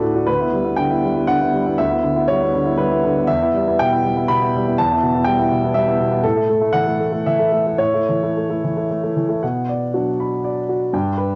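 A rubato 3/4 pulse around 120 BPM carries this reflective, intimate neoclassical minimalist fragment in B minor, where a solo grand piano, up front and boxy with audible action noise, long sustain and a cassette-tape tint, moves through G6/D, Em and A before settling on Bm at 9.4 s, all in a small room with light reverb that feels like a home recording.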